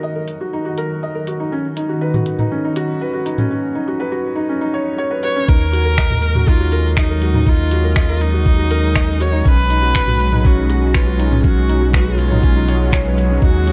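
Piano and strings electronica at 121 BPM, intimate and cinematic, moving between Ebm and Badd9 as a muted, mellow felt upright piano riff with digital delay and a lush, warbling detuned pad with chorus and sidechain pumping build under a filter sweep and tape-warm electronic snaps, crisp hi-hats and toms, before an expressive, close viola melody with vibrato and portamento enters at 5.2 seconds and the drop at 5.5 seconds brings in a round, deep analog bass with sidechain pumping and a muffled, thumpy, pitched-down kick, the mix set in light reverb and digital ambience.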